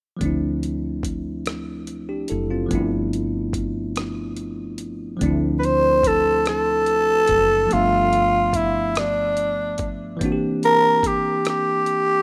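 A growling tenor saxophone takes the melody from 5.6 seconds, sitting up front with a raspy, gritty edge, a touch of vibrato and a clear pop-style solo voice. This is a slow, sultry R&B groove in 6/8 at 48 BPM, set in D minor with a late-night mood, and the recording is cut from a longer piece. Beneath the horn, a bell-like tine electric piano plays bright, clean accompaniment through Dm9 and G13 changes, moving to C7 near the end. A woody fretless electric bass adds a dark, round low end, colored by analog chorus. A dusty sampler-style drum kit keeps the pulse on hi-hat, rim click and a thumpy kick, with a compressed feel. Light reverb surrounds the rough home-demo mix.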